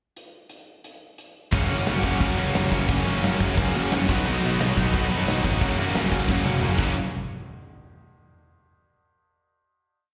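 A big, punchy acoustic rock kit sits up front from 0.2 s, its dark, rolled-off sound and medium-tuned snare pushing a fast punk groove at 177 BPM in F# major, with a drum fill at 6.3 s leading into a final hit. At 1.5 s a growly fuzz bass joins three guitars for a short, upbeat and rebellious chorus over F# and B: a bright, tight distorted guitar with slapback echo and a compressed overdriven guitar in the background drive eighth-note barre chords, while a very quiet, double-tracked high-gain guitar rings out chords. The whole piece sounds like a live gig heard through the venue's PA, with small-room ambience and recital hall reverb.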